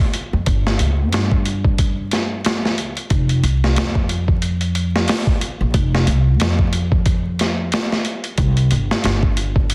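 An up-front, gritty boom bap sampler-style drum kit, with its thumpy kick, high-tuned snare and hi-hat compressed and re-recorded in a large room, drives this brooding, dark trip hop fragment at 91 BPM on swung 16ths, joined at 0.3 s by a woody pizzicato upright bass on steel strings ranging from F1 to G2, while a dense, heavily limited master with little reverb adds vinyl crackle.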